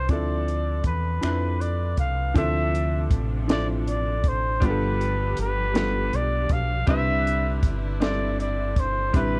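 A breathy, intimate trumpet with light vibrato and scooped notes sings a yearning, sultry melody over a clear, worn grand piano, a deep, round dub bass and a compact cocktail kit of finger snaps, hi-hat, high-tuned snare and punchy kick in this slow six-eight R&B fragment, with a lush bowed string section joining in the background at 2.4 seconds, all dry and tinted by cassette tape.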